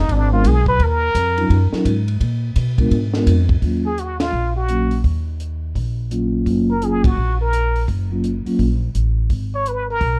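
Dark, warm and nearly dry, this short late-night jazz fragment from a longer piece has a moody, small-group swing and bop feel. The plunger-muted trumpet sits up front with a wah-wah voice, light vibrato and a touch of plate reverb, carrying a solo melody from 0.0 to 3.6 seconds over minor-key changes. The upright bass is pizzicato, woody and growly on steel strings, while the vibraphone, struck with soft mallets and its motor off, rings mellow and metallic. The compact cocktail kit, heard in a small room, is smooth and rolled-off on top, with a high-tuned snare, punchy kick, hi-hat and ride cymbal. After the trumpet's solo, the band hits accents at 4.2 and 7.0 seconds.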